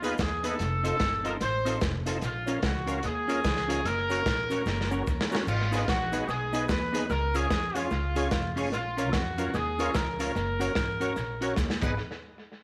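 A tight, clear horn section sits up front carrying the melody in this mischievous, energetic ska excerpt, with a swung feel and a chord movement that keeps circling back to G# minor. Beneath it, a crunchy breakbeat kit with saturated grit, dark cymbals and a rolled-off top drives the groove, its tape echo adding character, and it drops in short fills at 4.7 and 11.6 seconds. A woody, thumpy pizzicato upright bass anchors the low end while a twangy, clean electric guitar with tremolo fills in the accompaniment. A thick, overdriven tonewheel organ punches stabs from the background through chorus vibrato and a slow rotary speaker, and a grainy cabasa ticks along very quietly. Light reverb and small room ambience give the whole band a close feel.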